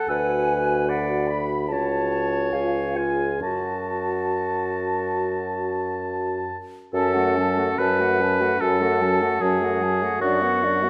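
This classical fragment is a slow, romantic movement for wind quintet in four, moving with a rubato feel and a melancholic, elegiac mood. A silver concert flute carries the melody with a pure, metallic tone, vibrato and tongued notes, heard close and intimate. Sitting more prominently up front, a warm oboe sings a smooth-topped second line. A clear, soft-attacked clarinet and a French horn with light vibrato supply accompaniment from further back, the clarinet sounding distant and roomy. A mellow bassoon anchors the bass near the front, joining the horn at 0.1 s, while the harmony moves through Bm/D, F#m/C#, C# and F#m before settling on Bm/F# at 10.2 s, all bathed in a generous recital hall reverb.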